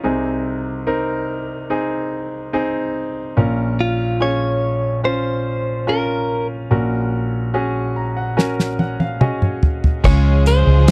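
A bright, brilliant concert grand piano opens this tender, emotional pop ballad at 72 BPM over Ab/C, Bbm and Gb/Bb chords; a clean, scooped, direct-recorded electric guitar takes the melody at 3.8 seconds, and the piano adds a fill before a damped 70s drum kit with a fat snare and dark cymbals plays its own fill from 8.4 seconds; at 10.0 seconds the music lands on Db as a round, foam-muted fingered bass, background bowed strings with vibrato and a jingly tambourine join, all within a dry, close 1970s-style studio sound with light reverb.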